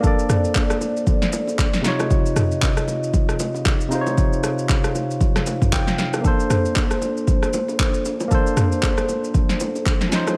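A layered deep house drum kit drives this amapiano excerpt in 4/4 with a swung sixteenth-note feel, its deep kick, punchy snare, handclaps, rim click, shaker and toms sitting up front with overdrive and the grit of a small room. Acoustic congas and bongos add a vintage, band-limited layer of percussion in the background. A bright, barky tine electric piano plays clean, direct accompaniment over lush major ninth chords, and it breaks into a short fill from 5.5 to 6.2 s, leading into the harmony's return to its opening chord. Behind it, a dark French horn section holds soft-attack sustained chords in a classical ensemble style. The sound is dry and close, and the mood is soulful and warm, a snippet cut from a longer piece.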